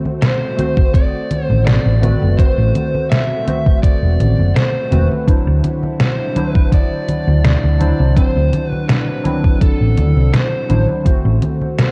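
Woozy and melancholic, this short vaporwave excerpt drifts at 83 BPM in 4/4 with a light swing on the sixteenths, sitting in A dorian and moving from Am69 to D9 before settling on Am6. Warbling, nostalgic synth keys built from square and sawtooth tones carry the accompaniment with a filter sweep, subtle chorus and analog delay. Behind them, a lush, thick unison pad with a slow attack and long release holds sustained chords in the background, its chorus blurred by vintage 12-bit sampler grit. Up front, a detuned 8-bit drum machine of congas, hi-hat and a fat snare starts almost at once, overdriven, treated with gated reverb and re-recorded in a small room, and an overdriven, thumpy electronic kick joins it at 0.8 seconds. A hollow-body short-scale electric bass enters at 1.5 seconds with a dark, round, tube-saturated tone, while a biting, picked lead guitar with overdrive and analog delay sings the melody between A4 and E5. 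The whole piece has a dry, cassette-tape character that adds to its faded, nostalgic haze.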